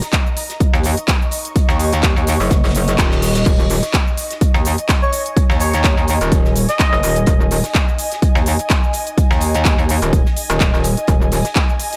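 A punchy, overdriven electronic kick sits up front alongside a metallic, distorted wobble bass with FM bite and sidechain pumping, driving this bouncy, swaggering bass house excerpt in Eb minor at 126 BPM with a 16th-note swing. Crisp house hats, handclaps, shaker and crash ride over a very quiet, dry soul kit with a medium-tuned snare, while an ethereal, detuned pad with tremolo and ensemble chorus pumps along with them. A reverse cymbal sweeps in at 2.8 seconds, and a soft, dreamy lead with vibrato and dub echo floats briefly from 5.0 to 7.2 seconds, all within a light digital ambience.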